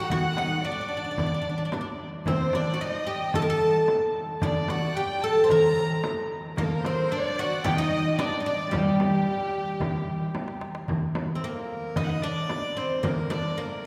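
A fretless oud leads this soulful, hypnotic Arabic maqam ensemble piece, its plectrum-plucked double strings sounding woody and deep, placed up front. Behind it, a single bowed violin carries a second line in a pure, floating sul tasto tone with a soft attack, heard from a distance. A lush symphonic violin section with smooth vibrato also plays a second line until 10.6 seconds. Darbuka and frame drum play in a straight 4/4, both struck with soft hands: the darbuka is small, high, close and dry, with a clay shell and natural skin, while the frame drum sounds vintage and band-limited. A drum fill leads into a new section at 10.9 seconds, where the oud, solo violin and percussion carry on together. The passage is cut from a longer piece, and the ensemble sits in a reverberant church-like space.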